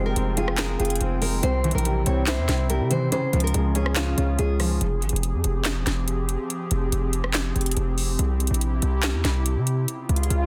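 Dark, melancholic trap hip hop at 142 BPM in a half-time feel and F harmonic minor, where a fingerpicked classical nylon-string guitar carries the delayed melody and a soft, muted felt piano with audible action noise accompanies it until about 4.8 seconds, while a breathy, detuned pad with chorus sustains chords over a punchy, saturated 808 bass and an up-front electronic kit of sharp snare, metallic hi-hats, handclaps and rim clicks, all cut from a longer piece and closing with an electronic swell at 10.1 seconds in a dense, heavily limited mix with light reverb.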